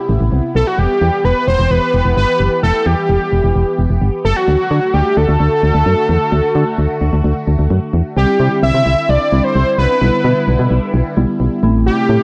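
Pop cut from a longer piece, driving and melancholic at 130 BPM in E minor, built on a punchy, round FM bass sitting up front under a fat, nasal analog lead with slapback echo and a swirling, warbling pad shaded by phaser and chorus. The chords move from Am through Em and D, and at 8.2 seconds muted, intimate felt-like synth keys with chorus join as the harmony shifts to Cadd9, Em7/B and Am7. The production is dark with light reverb.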